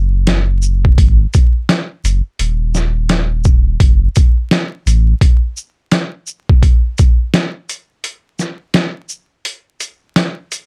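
Gritty and dark, this short boom-bap hip-hop excerpt rolls at 85 BPM in 4/4 with a 62% swing on the 16ths, its dry sound dusted with vinyl crackle. A deep, round sine sub bass sits up front from the start, sustaining mellow low notes until 5.1 seconds. A compressed, pitched-down sampler-style kit enters at 0.3 seconds with a thumpy kick, medium-tuned snare, hi-hat and shaker, its tape-warm grit carrying on through the break from 5.2 seconds.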